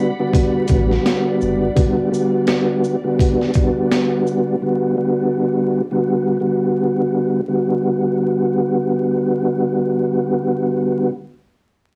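A mellow tonewheel organ, flute-like and clean through chorus vibrato and a fast rotary speaker, opens this soulful boom-bap hip-hop excerpt at 84 BPM in G major on a Gmaj7 chord, with a soft, bowed string section sitting intimately in the background. A gritty, compressed sampler-style kit with a thumpy kick, high-tuned snare, hi-hat and shaker swings up front from 0.3 to 4.5 s, while a round, deep dub sub bass appears briefly from 0.7 s. Vinyl crackle and moderate studio reverb frame this home cassette recording, with tape color on the organ, strings and drums.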